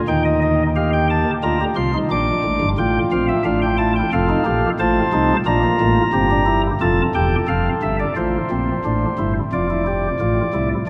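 A chamber organ on soft flute stops opens at 0.1 seconds, its gentle chiff heard up front as it carries an elegant, stately baroque-style four-part fugue in a straight 4/4. The organ alone spans from deep low notes to warm upper lines, set in a cathedral reverb with a 6.3-second decay, and the harmony moves from Eb through Bb and F7 before a new section begins at 8.2 seconds and settles on Dm/F. This passage is cut from a longer piece.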